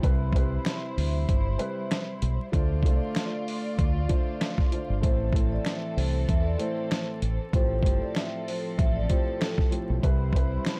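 Dark production with vinyl crackle frames this reflective, moody boom-bap hip-hop excerpt at 96 BPM with a 16th-note swing, where a gritty, compressed sampler-style drum kit with thumpy kick and fat snare sits up front beside a round, deep dub fingered electric bass, a boxy, short-sustained baby grand piano plays accompaniment with plate reverb through Cmaj7, Dm7, Am and Fadd9, a bowed sul tasto string section adds soft-attack stabs with digital delay, a very quiet, close finger snap enters at 0.6 seconds, and a ringing, metallic vibraphone with soft mallets carries the melody from 5.0 to 9.7 seconds through plate reverb and delay.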